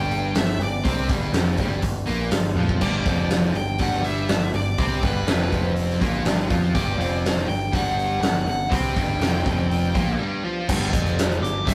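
This short cut from a longer quiet-loud alternative rock piece opens at once on a full band, with a nasal lead guitar through a parked wah singing a dark, overdriven melody over a G chord. Just behind it, a huge arena drum kit arrives at 0.1 seconds, its fat snare and punchy kick sitting up front in a big, natural room. A growling picked bass, bright and overdriven, anchors the low end. Two rhythm guitars sit further back playing the riff: one a compressed, bright fuzz, the other a warm overdriven tone. Beneath them a mellow tonewheel organ holds very quiet, round chords through a slow rotary speaker. After a drum fill at 2.6 seconds and a break at 10.2 seconds, the lead guitar takes a solo from 10.7 seconds, capping an anthemic, cathartic rehearsal-room sound with light reverb and tube saturation.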